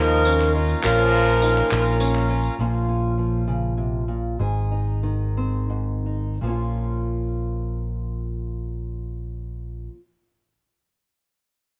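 In 6/8, this wistful, yearning indie folk excerpt opens with a breathy, chiffy tenor recorder melody carrying tape echo and vibrato, a clear French horn second line, a shimmering octave-doubled twelve-string guitar, a very quiet grand piano, a reedy close-miked pedal harmonium, and woody vintage upright piano arpeggios with their own tape echo, over brief crisp group handclaps and a jingly, saturated tambourine. At 2.6 s this opening ensemble gives way to an up-front, dark fingerpicked archtop guitar while the round, amped electric bass carries on, and the pace slows until 6.4 s. Light studio reverb keeps the sound intimate, with audible piano action noise.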